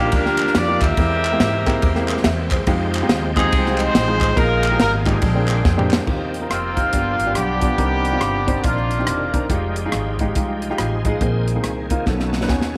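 This short excerpt of uptempo gospel moves at 141 BPM in 4/4 with a swung eighth-note feel in Eb major, sounding soulful and jubilant. A horn section carries the melody with light vibrato and a roomy, distant quality touched by tape echo, then drops out at 9.5 seconds. Beneath it, a clear grand piano with audible action noise plays accompaniment, while a shouting tonewheel organ sits in the background holding sustained chords through a fast rotary speaker, light overdrive and chorus vibrato. A woody, growly pizzicato upright bass anchors the low end, and a polished, airy acoustic drum kit with a tight kick and medium-tuned snare sits up front, joined by crisp group handclaps that stop at 6.0 seconds. The harmony runs through rich extended chords from Ebmaj9 to a closing B9, with drum fills and an organ fill marking the turnarounds, all set in light reverb and small room ambience.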